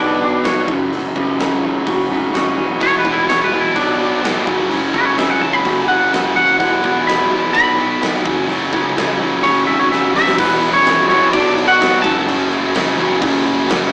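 A straight 4/4 pulse at 127 BPM drives this dark, brooding quiet-loud alternative rock fragment in F# minor, where an up-front, fingered twangy electric guitar carries the clean melody through spring reverb. Beneath it, a compressed fuzz guitar riff and a growly overdriven bass play from the start, joined almost at once by a huge arena drum kit with a fat snare, punchy kick and bright cymbals, while a scooped, picked twangy guitar plays background arpeggios until 2.8 seconds, when a heavy high-gain guitar takes up a riff. A drum fill at 9.9 seconds leads into a new section at 10.4 seconds, all captured with rough rehearsal-room character, tube saturation and a small-speaker sound in modest booth ambience.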